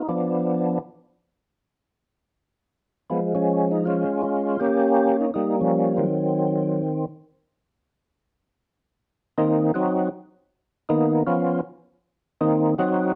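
Light reverb surrounds a lone percussive tonewheel organ, placed up front with a full, lightly overdriven tone, second-harmonic percussion, chorus vibrato and a slow rotary speaker. This soulful jazz fragment, cut from a longer piece, swings in 4/4 at 159 BPM with a lilting eighth-note feel. The organ plays between Eb3 and G4, sounding briefly at the start, then again from 3.1 seconds over Db9/F, Eb9 and Ebm6 harmony. The harmony opens on Bdim/F and passes through open, chordless moments. The second section, beginning at 9.1 seconds, is given over to an organ solo, with the organ entering at 9.4 seconds and moving between Ebm6 and Db13 before settling back on Ebm6.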